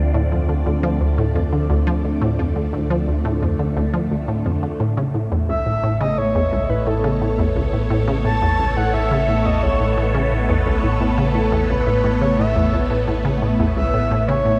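Ambient, sequencer-driven space music at 87 BPM in 4/4, this short cut from a longer piece feels mysterious and cosmic. A swirling, vintage string machine holds bright sustained chords through ensemble chorus and phaser, moving from Dm7 to A at 4.8 seconds. Beneath it, a juicy, squelchy blip pluck repeats a resonant riff with fast attack and short decay, colored by chorus, cassette tape grit and delay, sitting up front in the mix. A deep, round sine sub bass sustains low underneath. At 5.5 seconds a breathy, flute-like synth lead enters with a soft attack, carrying the melody with vibrato, tremolo, chorus and delay. A huge, wet reverb with a long tail bathes the whole piece in vast space.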